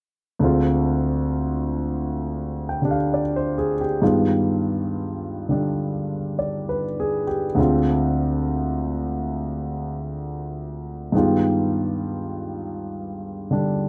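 Jazz at a slow, smoky and wistful swing of 67 BPM, this short excerpt cut from a longer piece features a concert grand piano alone from 0.4 to 13.9 seconds, intimate and up front with deep bass and audible action noise, comping between Dm7b5 and G7b9b13 in a dry, close 1970s-style studio sound touched by light reverb.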